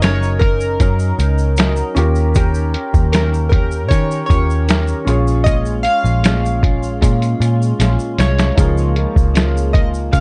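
A glossy, pulse-width-modulated retro synth carries the melody over twangy clean guitar with warbly chorus, a woody, slightly detuned upright piano, a round foam-muted bass, a muffled, thumpy sampler-style drum kit and a grainy tube shaker in this sunny, nostalgic bedroom-pop excerpt at 77 BPM, moving through Gb6, Eb7, Bbm7 and Db6 with a drum fill at 7.8 seconds.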